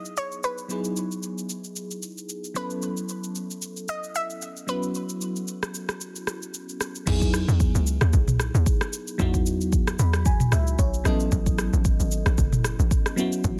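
A round, detuned analog pluck melody with a filter sweep, chorus and tape echo opens this relaxed 113 BPM amapiano excerpt with a 16th-note swing and stops at 6.5 seconds. A hollow, bouncy log drum bass then drops in up front at 7.1 seconds to anchor the groove, joining a sparkling, bell-like FM electric piano with chorus and tremolo that moves between Emaj9 and A69 and plays a fill at 9.7 seconds, and an electronic afro-pop kit with a deep kick, rim click, shaker, toms and crash, all in a dense, heavily limited modern master with digital ambience.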